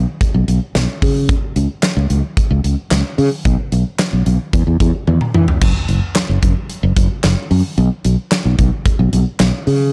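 A straight 4/4 pulse at 111 BPM drives this cool synth-pop excerpt, carried by a huge, up-front arena drum kit of punchy kick, fat snare, handclaps, hi-hat, crash and toms in a big-room sound, with a drum fill from 5.1 to 5.6 seconds leading into a new section. A warm, direct fretless electric bass with a subtle chorus sits up front alongside it, ranging from F#1 to E3 across the whole passage. The overall sound is dry and gritty, with the character of a cassette tape recording.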